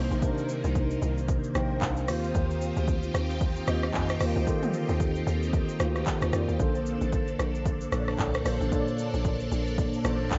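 Through a worn, warbling cassette haze with little reverb and a dulled top end, this relaxed amapiano excerpt at 113 BPM rides a swung sixteenth-note groove: a mellow, chorused tine electric piano sits up front, voicing Cm9, Eb69 and Bbmaj7 and adding a brief fill from 1.3 to 2.3 seconds; a swirling, sidechain-pumped string machine hangs further back; a hollow, bouncy log drum bass supplies the low end; and a punchy deep house kit of kick, dark hi-hats, handclaps, rim clicks, shaker and toms joins at 0.1 seconds.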